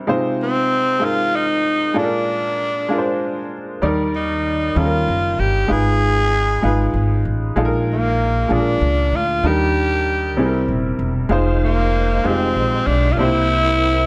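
A growling tenor saxophone carries the melody from 0.4 seconds, its raspy, breathy tone with light vibrato sitting up front and touched by a slapback echo. This is a slow, soulful gospel piece in 6/8 at 64 BPM in Eb major, with an uplifting mood. A clear, slightly worn grand piano opens the recording and supports the horn with accompaniment, while a woody upright bass, played pizzicato on steel strings, enters at 3.8 seconds. The harmony moves through rich seventh chords, from Fm7/C and Bb7 to Ebmaj7 and a dark Abm6, before turning toward Fm7 and C7. At 11.3 seconds a reedy tonewheel organ joins in the background with sustained chords, lightly overdriven and colored by chorus vibrato, key click and a slow rotary speaker. A moderate large-studio reverb gives the ensemble a roomy finish in this short cut from a longer piece.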